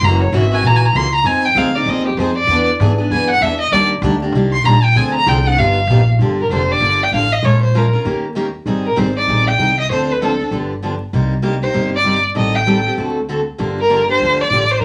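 Vinyl crackle and a wet studio reverb frame this bittersweet, virtuosic excerpt of acoustic string swing in the jazz manouche style, cut from a longer piece. A rich, smooth bowed violin with vibrato carries the melody and takes a solo through the opening 6.2 seconds, over bright picked steel-string acoustic guitar accompaniment and a woody, thumpy pizzicato upright bass. At 6.2 seconds the music moves into a new section, and all three parts play on to the end at 14.8 seconds.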